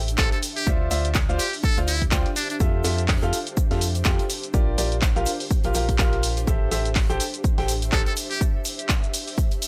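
A dry, gritty recording with little reverb opens this soulful, bittersweet piano house excerpt at 124 BPM in 4/4, with a 57% swing on the sixteenths. A punchy, tape-warm electronic kick sits up front, backed by an analog drum machine of cabasa, handclaps and hi-hat re-recorded in a small room, while a big-room acoustic kit adds filtered hi-hat, shaker and a medium-tuned snare in the background. A hollow, dark, organ-like FM bass with a fast, decaying attack pumps with sidechain compression, and a clear, vintage grand piano riff with short sustain and analog delay pumps the same way until 8.1 seconds. An ethereal, airy pad of detuned unison saw, triangle and sine tones with a sub octave swells in slowly beneath, colored by ensemble chorus, built-in reverb and tremolo. A brilliant, buzzy trumpet with a metal mute plays a thin, close-miked pop-style solo line through delay from 0.2 to 2.6 seconds and returns briefly at 7.9 seconds, over chords moving from Dm9 through Fmaj9, Bb6 and Am7 to Dsus2.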